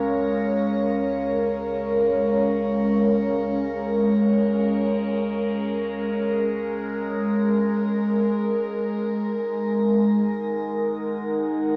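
Luminous and weightless, this ambient passage drifts in free time, cut from a longer piece. An evolving wavetable pad carries it from start to finish with sustained chords, its bright, sine-like tone morphing under phaser, its own reverb and a shimmer reverb, sitting up front in the mix. Beneath it, a deep, round sub bass holds low notes in the background and fades out across the full 11.8 seconds, while a filter sweep moves through the pad over the same span. The harmony rests on Db6 before shifting to Ab7sus2 at 8.4 seconds. A huge, wet reverb with a long decay surrounds the sound, though the overall character has the feel of a small speaker.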